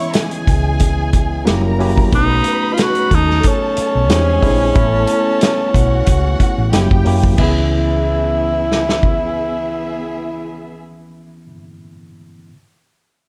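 Bittersweet and silky, this fragment of a lush 1970s-style soul piece in C# minor moves at 91 BPM with a gentle 16th-note swing, as a breathy, whispered tenor saxophone carries the melody with vibrato and scooped notes over a bowed studio string section with expressive portamento, a worn, slightly out-of-tune tine electric piano that plays on to 12.5 seconds, a very quiet dark French horn section holding chords, a round hollow-body electric bass entering at 0.5 seconds, and an up-front vintage drum kit with a punchy kick that stops at 9.2 seconds, set in a small room ambience.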